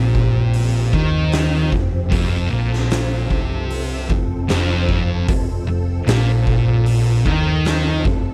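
A dry, close-sounding clip cut from a longer stoner and doom metal piece, heavy and sludgy at 76 BPM in a straight 4/4, sitting on an F5 chord throughout its 8.3 seconds. Two thick fuzz guitars grind out the riff, one dark and set back in the background, the other warm, while a round, dark hollow-body short-scale bass with overdrive holds down the low end and an oversized, low-tuned kit sits up front with a boomy kick, fat snare, hi-hat and a gritty, pumping big-room sound. Behind them a soft vintage string machine holds silky, mellow sustained chords with a slow attack, colored by phaser and ensemble chorus.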